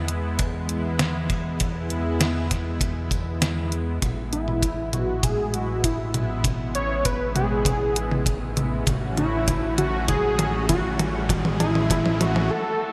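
Dreamy and nostalgic, this synthwave excerpt moves at 99 BPM in a straight 4/4 and wears a bright 1980s-style digital sheen with a moderate plate reverb. A soft supersaw holds smooth, detuned sustained chords through lush chorus, pumping against the sidechain alongside a fat, thick analog bass that blends sawtooth, square and triangle tones with ring modulation and a filter sweep. A detuned 8-bit drum machine sits up front with overdriven hi-hat, a medium-tuned snare and toms in gated reverb, while a punchy, gritty kick with a rolled-off top arrives at 0.4 seconds. At 4.3 seconds a bold unison lead enters with sub octave, vibrato and digital delay, its mellow tone riding over a drum fill as the harmony moves from E to E/A and then F#m/A. A very quiet riser and reverse cymbal join at 8.0 seconds, leading into a brief break at the end.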